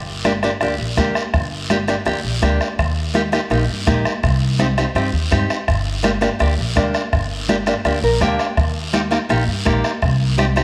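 A bright, fingerpicked nylon-string guitar sits up front in this fiery, danceable cumbia excerpt, adding a short fill at 7.8 s over a woody pizzicato upright bass that opens alone at 0.0 s, while a bombo struck with a soft beater, thin-skinned congas played by gentle hands in the background and a raspy guiro drive the Gm, Eb and Cm changes inside a moderate plate reverb.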